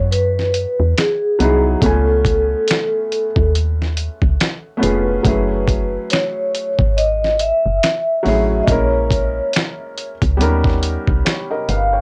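Lo-fi hip hop at a relaxed 70 BPM with a 16th-note swing, this cosy, dreamy excerpt cut from a longer piece sets a mellow vibraphone melody, played with soft mallets and a medium motor vibrato and softened by a low-pass filter, over a felt-muted upright piano whose intimate, vintage tone carries the harmony from Emaj9 through C#7b13 and F#m7 to D#7b13. A round, woody FM bass with a fast, decaying attack sits up front beside a dusty, sampler-style soul kit of finger snaps, hi-hat, snare and a thumpy kick, pushed forward with overdrive and 12-bit grit. The dry, gritty recording has a cassette-tape character and little reverb.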